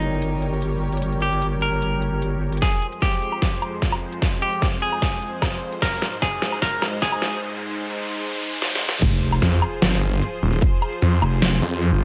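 Heavy wobble dubstep in F minor at 150 BPM with a half-time feel, this menacing, chaotic passage is cut from a longer piece. A clean, picked semi-hollow electric guitar carries a bright melody through tape echo until 7.4 seconds, set over a lush supersaw pad of detuned unison sawtooth chords that sustains under a phaser and sidechain pumping the whole way through. A saturated, mellow wobble bass with chorus and overdrive sits up front at the opening, while the dubstep kit brings a deep snare, crisp hats, crash cymbal and woodblock in a tape-toned, reverberant mix. From 2.6 seconds a punchy electronic kick joins as a build-up with drum fills and a filter sweep moves from F minor to A-flat, and a riser and sub drop sound in the background from 5.4 seconds. The drop lands at 9.0 seconds with an impact, the wobble bass returns, and at 9.4 seconds a snarling, growling distorted saw bass with a moving notch joins as the loudest part, giving the close a savage, aggressive weight.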